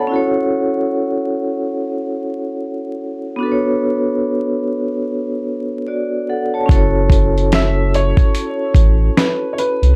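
Lo-fi hip hop excerpt with a hazy, nostalgic mood, opening on a ringing, metallic vibraphone with fast motor vibrato and a low-pass filter over F#m7 and Bm9 chords, joined at 6.7 seconds by a deep, round dub sub bass and a gritty, compressed sampler-style drum kit with a thumpy kick, while a woody, slightly detuned upright piano carries a low-pass filtered melody from 7.5 seconds, all under light reverb and vinyl crackle.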